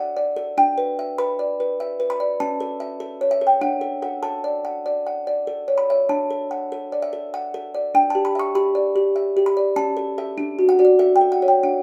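A gentle, straight lilt in three carries this tender classical lullaby written for music box, a short cut from a longer piece. The music box plays alone from start to finish across the full 11.8 seconds, its delicate, tinkling plucked notes sitting up front in the sound. Its tone is mellow and soft with a boxy, small-room character, giving the melody an innocent, intimate quality. The harmony circles calmly between the home chord and its close neighbours, settling back on D at 10.4 seconds before closing on A. A moderate studio reverb adds a light halo around each note, keeping the miniature feel cosy rather than distant.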